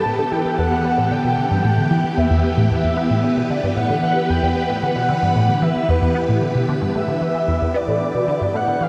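Cosmic and expansive, this short cut from a longer piece of ambient, sequencer-driven space music moves at 113 BPM in a straight 4/4, resting on an E minor chord throughout its 8.9 seconds. A resonant blip pluck carries the riff from 0.1 s, sitting low and up front with a juicy, squelchy filter snap, its fast attack and short decay colored by phaser, ensemble chorus, analog delay and a touch of vintage 12-bit sampler grit. Above it, a phased string machine holds sustained chords with a slow attack, its swirling, bright tone thickened by ensemble chorus and phaser. A breathy, flute-like synth lead sings the melody between B4 and A5, soft and airy with vibrato, shimmering through tremolo, ensemble chorus and analog delay. The production is dark and warm, bathed in a huge, wet reverb with a 9.3-second tail that makes the space feel vast.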